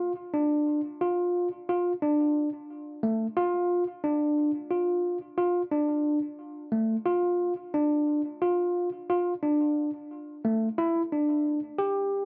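Intricate and driving, this short progressive instrumental excerpt in 11/8 features a solo overdriven tine electric piano, barky and gritty through a combo amp, sitting up front with tape echo in a small room whose top end stops at 10.8 kHz, and shifts into a new section at 10.8 seconds.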